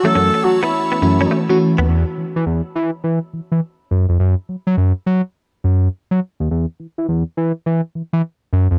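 Confident and punchy, this R&B excerpt swings in 4/4 over a dark, warm production with light digital ambience, opening on an F#m7 chord where a breathy, distant tenor saxophone with scooped notes and tape echo floats above a lush, dreamy FM electric piano carrying chorus and tremolo, an airy sweeping pad with a resonant filter swell, and a twangy, bright clean guitar riff from 0.1 seconds. The saxophone drops out at 1.5 seconds, and at 1.9 seconds the remaining parts fall away and the chords stop, leaving the smooth, up-front synth bass with its vibrato to carry on alone until 8.8 seconds.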